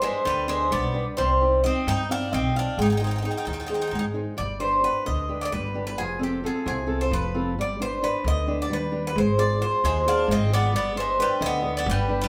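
A bright, metallic Greek bouzouki leads up front with double strings and some octave doubling, while a second bouzouki adds a lower picked line from 0.0 to 4.0 seconds and returns at 9.8 seconds. Beneath them, a dark fingerpicked steel-string acoustic guitar and a woody, thumpy pizzicato upright bass carry this dramatic, driving Greek folk passage in 7/8 at 264 BPM (eighths). The harmony is in G phrygian dominant, moving through G, Cm, Ab and F, and the band plays live in one room with a wet large studio reverb on a fragment cut from a longer piece.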